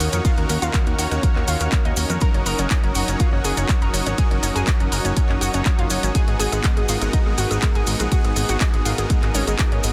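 A dense, heavily limited and nearly dry mix carries this driving, expansive progressive house excerpt, with a punchy, up-front electronic kick arriving at 0.2 seconds and dropping out at 9.7 seconds alongside a tape-tinged house kit of handclaps and hi-hat and a grainy, band-limited cabasa in the background. A fat sawtooth bass with a filter sweep anchors the low end while a round, nasal, wave-folded pluck spins arpeggios through chorus, cassette-tape colour and delay, and a smooth, detuned supersaw fires stabs with its own delay. Above them, a warbling vintage pad with 12-bit sampler grit holds sustained chords moving from Ebm7 to Gb6 to Abm7, and the pad, pluck, supersaw and bass all pump with sidechain compression.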